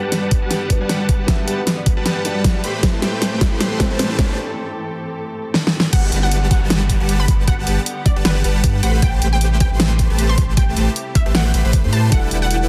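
A huge, detuned supersaw riff pumps through this bright, lush half-time future bass excerpt in G major at 155 BPM, over very quiet veiled muted strings, a soft felt-muted upright piano with audible action noise, a round tine-like synth pluck playing arpeggios until 4.3 seconds, and very quiet risers and downlifters, while an overdriven dubstep kit with a huge snare and a knocking electronic kick drive the build-up and a break from 4.4 seconds before the drop at 5.9 seconds brings in a punchy ring-modulated unison pluck melody with delay and a deep, saturated sine sub bass.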